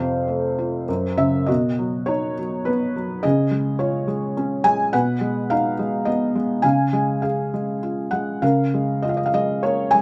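A felt-muted upright piano plays alone from the very first moment, its soft, mellow tone sitting up front and close, with the mechanical noise of its action clearly audible. This is lyrical solo classical piano in 3/4 at about 104 BPM, played with rubato so the beats fall unevenly and the phrasing breathes freely. The mood is warm and hopeful. A brief opening passage on F and Gb5 gives way at 1.5 s to a longer second section that moves through B, C#, G#m/B and back to C#, arriving on C#6 at 8.4 s. The part spans F2 to G#5 and is tuned slightly low, to A4 = 438 Hz. A light reverb adds a little air around the intimate, natural sound of this fragment cut from a longer piece.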